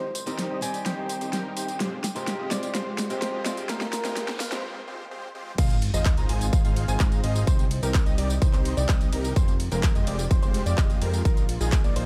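Festival progressive house in C minor at 127 BPM, this euphoric, powerful excerpt climbs through a build-up into a drop at 5.6 seconds. The opening pairs a round, FM-style struck synth lead carrying the melody with picked swing-style acoustic guitar, boxy and bright, tucked in the background, while a lush detuned unison pad holds sustained chords and a dense, compressed supersaw riff undergoes a filter sweep; the pad gets a sweep too. A fat, detuned analog bass pumps underneath along with the pad, supersaw and guitar, a big-room drum kit with an overdriven, huge snare, claps, hi-hat, tambourine and cymbals rolls through a fill, and a very faint riser, noise sweep and sub drop thread through the build. After a short break, the drop lands with an impact, a punchy, overdriven electronic kick sitting up front, and a concert grand piano playing arpeggios with vintage 12-bit sampler grit and delay. 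Chords cycle through Cm, Fmadd9, Bbsus4 and Ab6, and the production is dark with light reverb.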